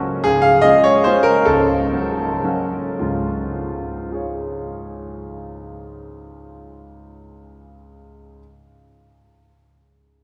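Rustic and proud, this short excerpt from a longer romantic classical piece is a triple-time dance in 3/4 and Db major, played with rubato at 100-162 BPM by a solo grand piano, warm, natural and up front, ranging from Db1 to F5 with dotted rhythms, slowing through its first 3.0 seconds as the harmony moves from Db to Gbm/Db and back to Db, all bathed in a wet cathedral reverb.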